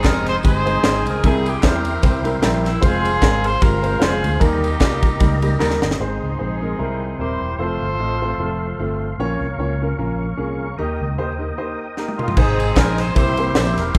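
Heard through the moderate reverb of a church or concert hall, this uptempo gospel passage moves at 151 BPM in 4/4 with a swung eighth-note feel, in Ab major, and its mood is soulful and uplifting. A punchy, vintage-toned horn section carries the melody up front. A boxy grand piano and a growly, amped fingered electric bass sit close beside it. In the background, a tonewheel organ holds sustained chords with light overdrive, chorus vibrato, key click and a slow rotary speaker. A crisp fusion drum kit with a high-tuned snare, tight kick and bright cymbals drives the groove alongside quiet, band-limited handclaps, tambourine and egg shaker. The drums and percussion drop out around 6.0 seconds for a contrasting passage, and the horns rest from 9.0 seconds. The drums re-enter with a fill at 12.0 seconds, the horns return at 12.2 seconds and the percussion at 12.4 seconds, before the clip ends mid-piece.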